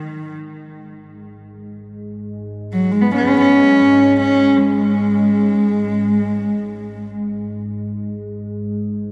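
Spacious and haunting, this brief excerpt of world meditation music drifts in free time, cut from a longer piece. A single bowed cello carries the melody between D#3 and C#4, placed up front and close, with an intimate, airy tone, light vibrato and soft attacks, and a touch of delay trailing its lines. At 1.2 s a deep, moody ambient pad slides in beneath it as a low drone from G#2 to G#3, its detuned sawtooth unison, sine sub octave and moving notch softened by chorus, a slow attack and a long release. The cello falls away at 7.1 s, leaving the sustained pad to hang alone until the close. A long cathedral reverb of about 5.0 s wraps the whole recording in a dark, warm haze.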